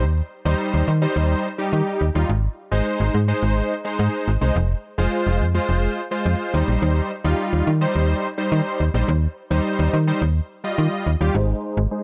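Euphoric and summery, this dance-pop excerpt moves at 106 BPM in a straight 4/4 feel, set in Ab major. A big, bold polysynth built from detuned sawtooth tones carries the accompaniment from 0.0 to 12.0 seconds, its fat, sustained chords given shimmer by chorus and softened by a low-pass filter. Underneath, a slap-like FM bass plays from the very start, snappy and metallic in its digital attack, each note decaying while sitting up front, louder than the synth. The harmony moves through Cm/Eb, Ab, Fm and Eb6 before circling back via Cm/Eb and Ebadd9 to land on Ab at 11.3 seconds. Light reverb surrounds the parts, and the overall production leans dark despite the sunny character of the music.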